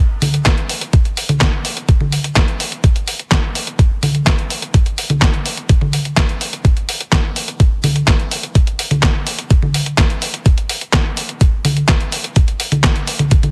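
A detuned 8-bit digital drum machine opens at 0.2 seconds with congas, handclaps, hi-hat and a medium-tuned snare, joined at 0.5 seconds by a thumpy, up-front electronic kick drum, both parts sampler-style and tape-warm as if re-recorded in a small room, driving a danceable, nostalgic italo disco groove at 126 BPM in straight 4/4, all heard through light reverb and a heavily compressed, radio-like sound with lossy artefacts in this short cut from a longer piece.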